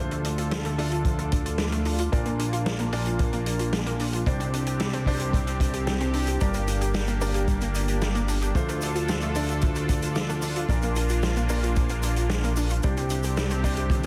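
A detuned sawtooth pad with chorus, tremolo and sidechain pumping opens this moody, cinematic synthwave passage, joined at once by a glossy chorused synth bass up front, a round analog pluck playing arpeggios with chorus and delay, and clear grand piano stabs with delay sitting in the background. A natural-sounding vintage drum kit of hi-hat, shaker, snare and toms comes in at 0.1 seconds, a tight acoustic kick follows at 1.0 seconds, and a drum fill lands at 13.9 seconds as the chords cycle through Dm, Bb, Csus2 and Gm. Light reverb and small room ambience surround a dense, heavily limited modern master.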